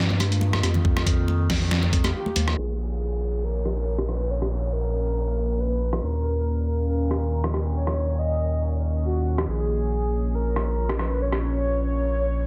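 A saturated sine sub bass opens this short cut of deep dubstep, deep and thick with a fast attack and sitting up front, joined almost at once by an overtone-sweeping drone of wave-folded sawtooth, sine and triangle tones whose resonant notch moves under chorus and built-in reverb. The mood is meditative and dark, in Bb phrygian at 139 BPM with a half-time feel and a light swing on the 16ths. Congas with hard hands and a thick skin sit in the background with dub echo until 2.5 seconds, while a layered, knocking electronic kick drum plays briefly from 0.8 to 2.0 seconds. A pitched-down, muffled trip hop sampler-style kit of hi-hat, rim click and snare sits up front, overdriven, with low-pass filters on the hats, snare and room. At 2.1 seconds a breathy, flute-like synth lead enters with vintage warble and vibrato, colored by analog chorus and dub echo, as a faint downlifter passes in the background, a filter sweep runs from 2.6 seconds, and the chords move from Ebadd9 through Bbm and Eb5 in a dense, heavily limited master with light digital ambience.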